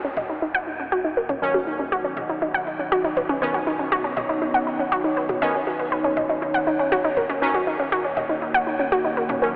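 Opening together from the first moment, a deep, moody ambient pad holds sustained chords beneath an up-front unison pluck spinning nasal, detuned arpeggios through analog delay, while a round analog bass sits low in the background with tube saturation. This is a dramatic, hypnotic melodic techno excerpt at 120 BPM in 4/4 with a straight feel, set in Eb minor and moving from Ebm7 to Badd9 at 2.0 seconds and back to Ebm7 at 6.0 seconds. A background downlifter sweeps through the first two seconds, and very quiet, tape-warm electronic toms enter at 0.2 seconds. From 1.4 seconds a bright, wave-folded synth brass stab adds punchy accents in the background, colored by chorus and analog delay. The whole mix is dreamy and soaked in a huge ambient reverb with a 4.7-second tail, yet filtered to a telephone-like sound.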